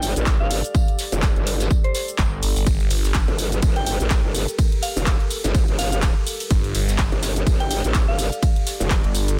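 A swung, bouncy bass house groove in this gritty excerpt has a punchy overdriven electronic kick up front from 0.3 s, with an overdriven house drum kit of handclaps, hi-hat, ride and shaker and a very quiet acoustic brush kit of hi-hat, snare and tambourine underneath, while an aggressive, growling, wobbling bass pumps against the kick, a swirling, thick phased saw bass enters at 2.2 s and again at 6.5 s, a moody analog pad sits deep in the background, and a soft, warbling FM bell carries the mellow melody through chorus and delay over a dense, heavily limited master.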